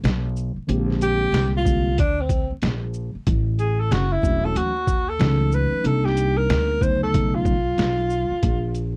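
Relaxed and cool, this short jazz-hop excerpt from a longer hip hop piece rides a swung 16th-note groove in 4/4. A sampler-style trip hop kit gives gritty, compressed, pitched-down hi-hat, shaker, medium-tuned snare and a thumpy kick, while a woody upright bass with steel strings sits up front, played pizzicato. A mellow, clean tine electric piano enters at 0.7 seconds with chords such as Bb13, A6 and Cm9, and drops out at 7.5 seconds. From 1.0 seconds, a breathy tenor saxophone takes the solo with a whispered subtone, soft attacks, vibrato and scooped notes in an intimate jazz style. The mix is dry and close, like a 1970s studio take, with vinyl crackle adding a dusty patina.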